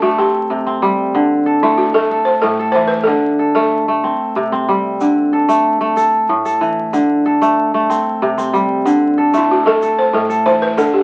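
Kora arpeggios ring out crisp and fingerpicked alongside a woody, buzzing balafon melody from the very start of this joyful, hypnotic stretch of West African string and xylophone music in 12/8, with the balafon stepping away at 3.9 seconds and returning at 9.4, while a grainy tube shaker sits in the background from 5.0 seconds, all heard through the crackle of a very old 78 rpm record in a moderate studio ambience.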